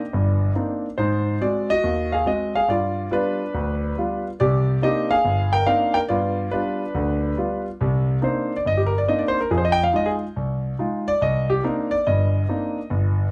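Close, detailed microphones and light reverb, with a touch of lossy compression artefacts, capture an intimate, up-front concert grand piano with deep bass and audible action noise, playing a cool, moody solo jazz passage in C minor at a swinging 141 BPM, cut from a longer piece, moving through Cm9, Ab7 and G7 before shifting to a new section at 7.8 seconds that passes through Fm7 and settles back on Cm9.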